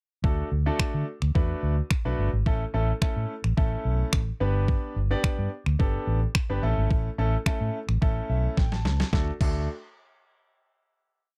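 An overdriven, detuned 8-bit drum machine drives this short, upbeat and euphoric dance-pop piece at 108 BPM in D major, pounding out a four-on-the-floor beat with a thumpy kick, medium-tuned snare, finger snaps and crash cymbal. Up front beside it, a dark, round, foam-muted vintage electric bass plays a syncopated line with ghost notes and chromatic approach notes, while a brilliant, intimate grand piano with audible action noise adds close-voiced syncopated chord stabs, both parts pumping against the kick. A piano fill from 8.0 seconds and a drum fill from 8.6 seconds lead into a final D chord at 9.1 seconds, all captured in a dry, close 1970s-style studio sound.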